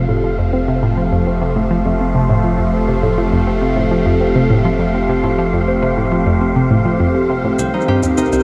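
Bathed in a huge ambient reverb, this short cut of cosmic, luminous space music moves at 102 BPM in a straight 4/4, drifting on a Fadd9 chord before shifting to C minor at 7.6 s. An up-front, swirling pad with phaser and chorus sustains the chords while a round, nasal sawtooth pluck with a filter sweep repeats a sequenced riff through chorus, phaser and delay, anchored by a deep sine sub bass and an airy, breathy noise texture that sounds like distant wind. At 7.6 s a fingerpicked, ringing concert harp joins with delayed arpeggios, alongside electronic shaker and congas.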